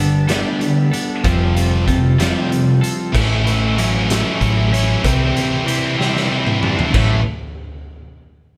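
This quiet-loud alternative rock excerpt, cut from a longer piece, has an anthemic, cathartic mood in a straight 6/8. A twangy, compressed twelve-string electric guitar rings out clean arpeggios up front while a bright, high-gain distorted guitar drives a riff beneath it in the background, and a dark, round hollow-body short-scale bass anchors the low end. A raw garage drum kit enters at 0.3 seconds with a punchy kick, medium-tuned snare, hi-hat, toms and crash, its gritty, saturated sound pumping in a bright stone room. At 3.1 seconds a second distorted guitar joins up front with another riff as the chords shift from Gadd9 and Fadd9 to A6 and Cadd9. A drum fill from 6.0 to 6.9 seconds carries the band back to A6, all of it caught live in one room with a moderate stone reverb.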